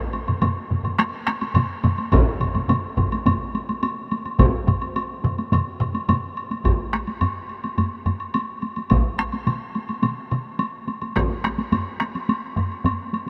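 A distant, up-front taiko struck with heavy sticks joins at 2.1 s in this driving, powerful Japanese traditional taiko ensemble excerpt at 106 BPM in a straight 4/4, with a close, dry heavy-stick taiko layer, a close heavy-stick taiko, a close, dry hard-stick taiko that stops at 10.4 s, and a woody woodblock in a live room, all set in a huge ambient reverb across two sections that turn at 6.7 s.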